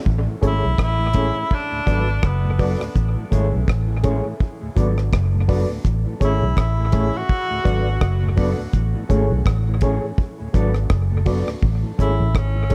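A swung 83 BPM roots reggae groove in A major, cut from a longer piece, pairs a dry, tight-kicked drum kit on hi-hat, kick and rim click with a round, foam-muted fingered bass up front, while a clean dark electric guitar with spring reverb and dub echo, reedy tremolo electric piano stabs and a lightly overdriven tonewheel organ on slow rotary speaker in the background sway between Amaj7 and D6 under a clear, distant tenor saxophone melody with light vibrato that turns to a solo at 11.6 seconds, all in a sunny, laid-back, echo-heavy mix.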